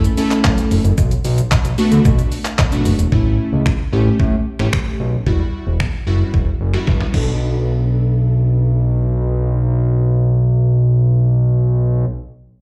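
A fat, saturated, nasal analog bass sits up front in this confident, bittersweet dance-pop fragment, pumping against a thumpy, tape-toned 8-bit drum machine of kick, snare, claps, snaps, hi-hat, shaker and crash that opens on a drop, rolls into a fill at 6.9 seconds and falls away at 7.3 seconds, while glassy, airy digital keys with chorus and slapback echo float lower in the mix, all heard as a live gig through the venue's PA with club reverb.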